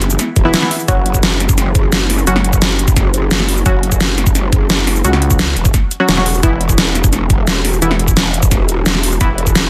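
Aggressive and mechanical, this excerpt of dark technical drum and bass runs at 173 BPM in a straight 4/4. A very quiet, swarming drone of tense, ring-modulated chords opens it before dropping out at 0.9 s, when the drop hits over an E to F#5 to E5 progression. Up front, a detuned, wobbling growl bass with tube saturation and chorus drives beneath a knocking electronic kick and an overdriven dubstep kit with a deep snare, metallic hats and cabasa, while muted, filter-swept chord stabs decay into dub echo and a thick FM bass growls briefly at 5.0 s, all under light reverb in a dense, heavily limited master.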